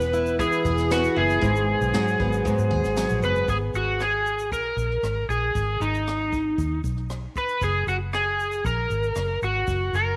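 A straight, steady four-four pulse comes from a jazz kit played with brushes in a small, natural-sounding room, where a boomy kick, a high-tuned snare, rim clicks and shaker sit low in the mix. Beneath it, a vintage fingered electric bass gives a dark, round, foam-muted tone through an amp. A picked twelve-string acoustic guitar sits up front with a shimmering, octave-doubled sound and audible finger squeak, but it drops out at 4.0 seconds. Carrying the melody throughout is an overdriven electric slide guitar played with fingerpicks, its warm tone also close and forward. The harmony moves from E to G#m7 and then, after the music shifts into a new section at 3.5 seconds, settles on G#m before turning to F#, all bathed in a moderate echo-chamber reverb that gives this reflective, wistful acoustic pop fragment a gentle sense of space.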